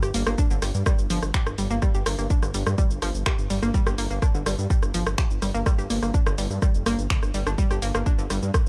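A punchy, up-front electronic kick drum enters at 0.4 s and anchors this cinematic, dramatic fragment of melodic techno, set over a deep, rumbling detuned saw bass that pumps with sidechain and holds a sustained, beating tone. A house drum kit of finger snaps, bright hi-hat, rim click and shaker sits in a small room, while an analog pluck spins arpeggios with a round, ring-modulated, filter-swept edge, colored by chorus, tape echo and sidechain pumping. The excerpt stays on a single G minor chord, and the dry, gritty hardware recording carries a cassette-tape grain.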